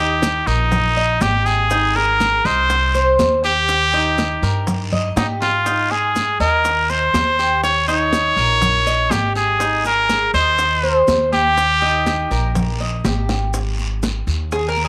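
A sunny, relaxed slice of Cuban son and guajira, this excerpt sets a nasal, brilliant straight-muted trumpet up front over picked, metallic tres arpeggios, woody pizzicato upright bass, and background bongos, bright high-tuned congas, raspy guiro and grainy maracas, all bathed in moderate spring reverb, with a drum fill around 5.2 seconds, the trumpet dropping out at 12.8 seconds, another fill at 13.3 seconds, and the tres taking a brief solo from 13.5 seconds.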